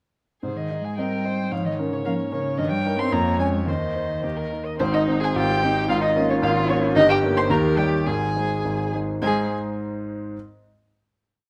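In a supple two-beat metre with rubato, this quick, spirited classical-period movement for piano quartet states its opening phrase twice before settling on a final chord. A con sordino violin carries the veiled melody with vibrato and portamento, while a second muted violin, set distant, weaves independent inner lines and answers at phrase ends, and a close, dark-toned muted cello adds a counter-melody, sustained chords and octave doubling of the tune. Up front, an intimate grand piano with audible action noise supplies octave bass and rocking two-note chords, sounding on alone after the strings stop at 9.5 s, within a moderate stone-room reverb.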